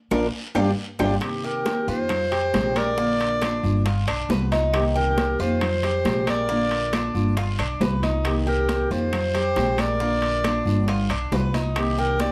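A clear, close-miked clarinet takes the solo melody at 1.2 seconds in this danceable, sultry excerpt of Cuban son and guajira, entering after an opening band accent and drum fill. Beneath it, a full-bodied fingerpicked nylon-string guitar and a mellow, metallic tres with double strings keep the harmony moving, while a woody, thumpy pizzicato upright bass sits up front. The percussion fills out the groove with ringing metal-shell timbales, soft-handed high-tuned congas, tight bongos, a raspy guiro and very quiet claves.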